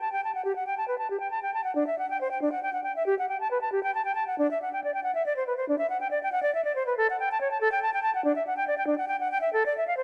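This is a classical, baroque-style fantasia for unaccompanied flute, a ten-second passage cut from a longer piece. The mood is dance-like and radiant, with a lilting 12/8 metre at about 93 beats per minute in dotted quarters, shaped with a free, rubato feel. The concert flute plays solo from start to finish, ranging from D4 up to A5 with a pure, warm, straight tone and clearly tongued notes. It sits up front in the mix, surrounded by a moderate recital-hall reverb that gives each phrase a gentle bloom. The overall production is dark and warm, lending the flute line a soft, rounded setting.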